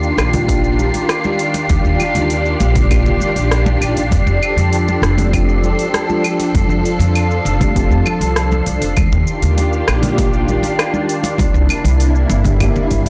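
A blown-out, overdriven recording with light reverb carries this smooth, relaxed sunset chillout passage, cut from a longer piece and moving at 99 BPM in a straight 4/4 in F mixolydian. Up front, a silky string machine holds sustained chords through phaser and ensemble chorus, moving from Ebmaj9 to F69 at 4.1 seconds, back to Ebmaj9, and on to C9 at 11.4 seconds. A woody, thumpy pizzicato upright bass with tube saturation anchors the low end. An overdriven deep house kit of cabasa, claves, metallic hi-hat and rim click sits with a punchy electronic kick, while close, dry congas played with hard hands stay in the background. A mellow tine electric piano adds clean accompaniment through digital delay, and a breathy, wind-like tuned noise texture floats high above on a long release.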